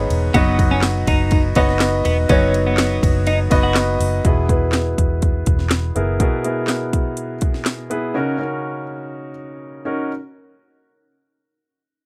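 Piano and muted electric bass start together, with a house drum kit entering at 0.1 s, the piano's concert grand sound clear and intimate, with audible action noise, deep bass and long sustain sitting up front. This short, uplifting piano-driven pop fragment, cut from a longer piece, moves in a straight 4/4 over chords from B to E and then F#6. A bright, twangy twelve-string electric guitar with tremolo plays a clean, picked riff from 0.3 s to 3.8 s. The dark, round bass is foam-muted and punchy, dropping out at 6.2 s, while the electronic, layered kit adds a punchy kick, cracking snare, metallic hats, handclaps and ride cymbal with a tape-warm edge until 8.0 s. The piano carries on alone to 10.1 s, and the dry sound keeps every part crisp and immediate.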